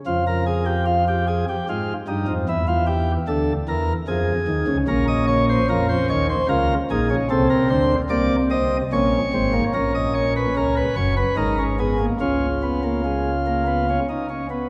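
Heard through a long, wet church reverb, a full, up-front chamber organ principal chorus with a distinct chiff carries this contemplative yet driving baroque-style three-part fugue in triple time alone, moving into a new section at 9.8 s in a short cut from a longer piece.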